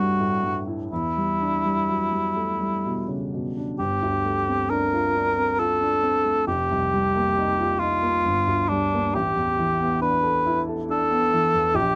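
In a rubato 3/4, this wistful, mysterious impressionist classical duo places a mellow cor anglais with light vibrato up front, carrying the melody over the open, long-sustaining chords of a warm baby grand piano, closely and intimately captured in light reverb, with the harmony shifting to a new modal colour at 3.8 seconds in this fragment of a longer piece.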